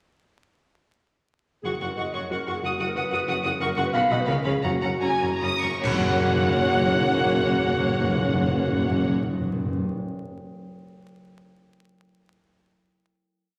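In a straight triple metre, this short, complete classical piece for symphony orchestra moves at a fast romantic pace with a dramatic yet lively, spirited character. From 1.6 s the strings, clarinet and tuba play together. A lush, vibrato-rich violin section carries the melody on repeated notes and sustained chords, sounding somewhat distant, while a second, warmer violin section and a mellow, punchy clarinet trace second lines. Beneath them, a smooth viola section supplies background accompaniment. The bass rests on bowed cellos, a very quiet chamber double bass section and a roomy tuba with light vibrato doubling the line. The music slows before a band accent at 5.8 s that opens the final chord. Dark cymbal swells, crashes and bass drum strokes sit close and dry from 3.6 s, while hard-mallet timpani strike articulate single notes up front, all under a wet scoring-stage reverb and a vinyl crackle.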